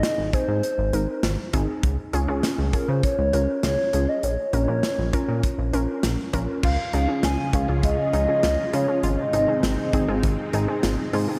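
A hollow, woody synth lead with a clarinet-like tone opens this wistful yet bright synth-pop excerpt at 100 BPM in Db major, carrying the melody through chorus, phaser and tape echo over a warbly, dusty pluck that supplies lo-fi, detuned accompaniment. A polished modern studio drum kit plays from the start in a straight 4/4, its tight kick and medium-tuned snare sitting up front alongside crash cymbal and hi-hat. At 0.2 seconds a glossy, retro synth bass arrives, chorused and pulse-width modulated with a ring-modulated edge, also placed up front. The harmony moves from Ab to Db to Bbm before returning to Db at 6.6 seconds, where a full, vintage string machine with cellos adds sustained chords thickened by ensemble chorus and a sub octave. At the same moment a very quiet, round analog pluck begins arpeggios, and the whole mix floats in a lush, dreamy hall reverb until the fragment ends around 11.4 seconds.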